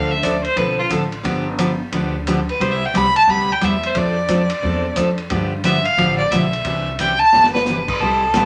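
Playful and cheerful, this short western swing cut from a longer country piece moves at a brisk 178 BPM in C major with a swing feel on the eighths. A clear, focused fiddle with light vibrato carries an up-front solo from the start, over a bright, full-bodied picked acoustic guitar and a woody, thumpy pizzicato upright bass on gut strings, while a vintage drum kit with dark cymbals and a punchy kick adds a fill at 7.3 seconds. The chords move from Dm7 through G7 and Cmaj7 to F6, back to G7 and landing on Cadd9, all set in a small, wet room.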